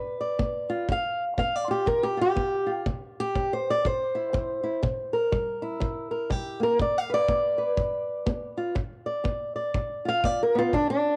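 A fingerpicked old ladder-braced acoustic guitar opens this gritty, soulful acoustic country blues excerpt, its boxy, up-front tone carrying the melody over a swung 4/4 feel through G7, C7 and back to G7. A punchy kick drum with brushes joins at 0.4 seconds, distant and roomy with a rolled-off top and cassette-tape character. Light studio reverb and a home cassette recording give the short cut a homespun, intimate sound.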